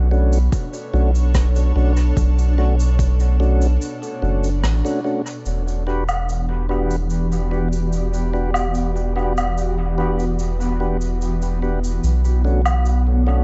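The rhythm moves at a straight, unhurried 73 BPM in 4/4, carried by a brushed studio-room kit of cabasa, rim click and woodblock sent through dub echo, with a deep, overdriven electronic kick that stops at 3.2 seconds. This hazy, meditative ambient dub piece is in E dorian, tuned to A4 = 439 Hz, and is cut from a longer work. A soft, round sub bass built from triangle and square waves sits up front with tube saturation, while a cloudy granular pad sustains blurred, evolving chords in its own reverb. A mellow, dark tonewheel organ adds clean stabs with audible key click, turning through a slow rotary speaker and trailing dub echo. A break arrives at 3.8 seconds with a brief band accent inside it, and the harmony shifts from Bm7 to Em7 at 5.5 seconds before returning to Bm7. The mix is echo-heavy and soaked in studio reverb, with its top end kept dim and soft.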